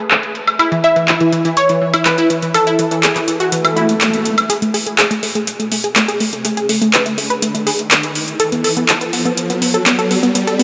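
A huge ambient reverb and a low-pass filter cast a soft haze over this euphoric, hopeful progressive house fragment, which moves at 123 BPM in a straight 4/4 in A major. A bright, lush sawtooth unison pluck with detuned voices, a phaser and dub echo carries the melody between A4 and E5, punchy and quickly decaying under a filter sweep until it stops at 4.0 seconds. Beneath it, a second detuned unison pluck spins arpeggios from E3 to B4 throughout, its sawtooth and triangle tones wave-folded and threaded with a noise layer, passed through phaser and dub echo. An up-front, overdriven deep house kit of handclaps, metallic hi-hats and woodblock adds layered electronic drive, treated with studio reverb. An electronic swell rises from 3.6 seconds, and from 4.5 seconds a riser builds to the end of the cut.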